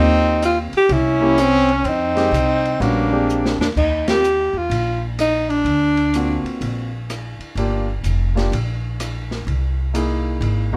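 A breathy alto saxophone with light vibrato carries the melody up front in this sophisticated, swinging small-group jazz excerpt, joined by a warm trumpet on a second line until 3.6 s and falling silent at 6.4 s. An intimate grand piano with audible action noise provides accompaniment, woody pizzicato upright bass holds the low end, and a dark, smooth drum kit with a boomy kick plays a fill just before a band accent at 4.0 s, set in a moderate club reverb.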